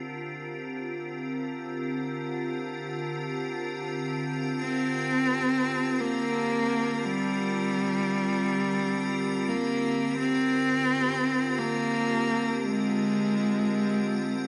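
A clear, close-miked bowed cello with focused vibrato enters at 4.6 seconds to sing a melody through analog delay over an icy, crystalline glass pad that has held detuned, slow-blooming chords in G phrygian from the start, opening on Gm7, giving this eerie, cerebral IDM fragment in free time a dry, gritty hardware sound with light studio ambience.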